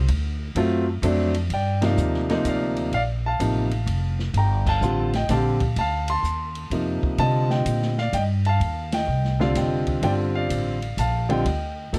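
This smoky, swinging jazz piano trio fragment opens on a smooth, vintage-toned grand piano carrying the melody over a D7#9 chord, with an upright bass sounding from the start and the drums joining almost at once. The tempo sits at 127 BPM in a lilting 3/4 with swung eighths, set in G minor. The pizzicato bass is woody and thumpy with steel strings, sitting up front alongside the warm, long-sustaining piano, while the acoustic kit stays further back, its dark cymbals, medium-tuned snare and boomy kick heard in a small, natural-sounding room. After the opening, the harmony settles onto Gm9, moves to Cm9 and returns to Gm9, with the full band hitting accents at 1.7, 4.6 and 8.8 seconds. A light reverb and the soft grain of cassette tape give the recording an intimate, late-night character.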